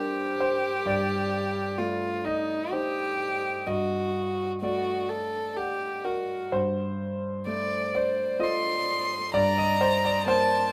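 A solo violin and a concert grand piano begin together in this neoclassical piece, holding a melancholic, reflective mood in G minor at a slow 64 BPM in 3/4 with a loose, rubato feel. The violin carries the melody, played by one player with a soft attack, light vibrato and an airy, sul tasto bow that sounds close and intimate. Beneath it the piano provides accompaniment with a clear yet slightly worn tone, a deep bass and long sustain. Both instruments sit up front in a moderate studio reverb. The harmony moves from Gm through Adim/G, D/G and F/G before returning to Gm at 9.3 seconds, all over a steady G in the bass, in this 10.7-second excerpt cut from a longer piece.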